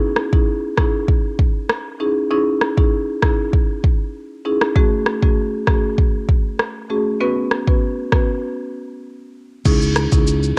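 Dancehall at 98 BPM in C# minor, sultry and hypnotic, this short cut opens with a woody marimba on rosewood bars, played up front with medium mallets over chords moving from C#madd9 through F#madd9 and Bsus2. An electronic, produced afro-pop drum kit sits up front with a deep kick, dark hats, rim clicks, shaker and crash, carrying a tape-like glow, and a break arrives at 8.4 seconds. At 9.7 seconds an amped, fingered electric bass lands on a low C# as the harmony returns home, all set in a digital ambience with the character of a home cassette recording.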